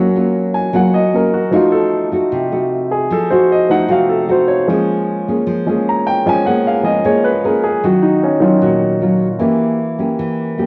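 A dark, thumb-plucked nylon-string guitar and a baby grand piano sound together from the very start of this melancholic, intimate bossa nova, cut from a longer piece and moving at 152 BPM in a straight 4/4. The guitar carries a classical, acoustic character and sits up front, sharing the accompaniment with the piano, whose warm, natural tone also sits close to the listener. The piano takes a solo across the whole passage, from 0.0 to 10.7 seconds, and carries a plate reverb in addition to the cassette tape coloring both instruments share. The harmony drifts through lush, shadowed chords, opening on Gbmaj13 before passing through F7b9, Bbm7/F and Ebm9 and settling on Edim7. A small, reverberant room and the grain of a home cassette recording give the whole passage a private, lived-in feel.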